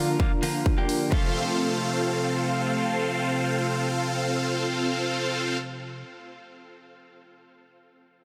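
Drenched in a huge ambient reverb, this short cut of triumphant, euphoric festival progressive house in free time and F major pushes bright, detuned supersaw chords up front with phaser, dub echo and a filter sweep over the first 1.1 seconds as the harmony moves from Bb/D to F, while a thick, warbling vintage pad with chorus sits in the background, a clean, direct-recorded electric guitar adds compressed, picked accompaniment with its own dub echo, all three pumping to the sidechain, and a punchy layered kick joined briefly by an electronic hi-hat sounds between 0.2 and 1.2 seconds.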